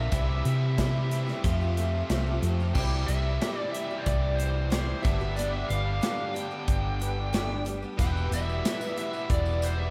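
A dreamy, reverb-soaked mix frames this short cut of jangly folk rock and heartland rock at 92 BPM in a straight 4/4. A dark, distorted lead guitar with tape echo carries the melody over a shimmering, octave-doubled twelve-string acoustic guitar with ensemble chorus, a biting, double-tracked overdriven guitar riff, and a round, up-front hollow-body bass. A natural country drum kit with a punchy kick drives the chords from C through Fadd9, G and Em, and a jingly tambourine slips in at 8.0 seconds in the background.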